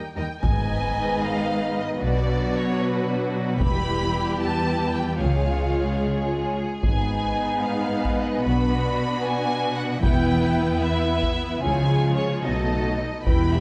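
A moderate concert-hall reverb surrounds this relentless, dramatic cinematic score, cut from a longer piece and moving at 75 BPM in a straight 6/8 through a shifting chord cycle. Warm violins with soft attack carry the expressive melody over a distant second violin line, lush violas, smooth cellos and a rich chamber double bass section, while a French horn section holds sustained chords in the background. Close, dry taiko drums struck with heavy sticks drive the music from 0.4 seconds, a huge, bright impact sounds at the opening, and timpani with calf heads enter only at 13.3 seconds.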